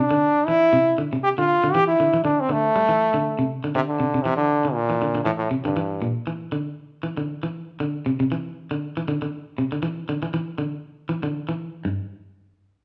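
Caught live by a band playing together in one large studio with a moderate reverb, this short cut from a longer afrobeat piece feels hypnotic and defiant, moving in a lightly swung 4/4. Up front, a brilliant solo trombone carries the melody with a light vibrato and a smooth top in a pop style before stopping at 6.1 seconds. Beside it, a twangy, picked electric guitar at the edge of break-up plays arpeggios until 12.0 seconds.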